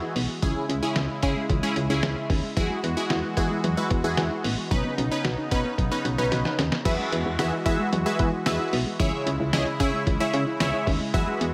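A lush hall reverb bathes this upbeat, nostalgic synth-pop excerpt, lending the mix a spacious glow. Up front, a funky polysynth comp built from detuned sawtooth and pulse waves plays bright, punchy chords with a filter sweep and chorus. Beneath it, a brassy analog pad holds bold, sustained chords with a soft attack, while a round, gentle pluck spins dark arpeggios through chorus and digital delay in the background. A solid FM bass enters at 0.2 seconds with a mellow, decaying tone, alongside a lo-fi sampler-style kit that sounds muffled, pitched down and tape-warm, with a thumpy kick and fat snare. A drum fill at 6.3 seconds leads into a new section at 6.9 seconds, as the harmony cycles through C#m, Eadd9 and Badd9.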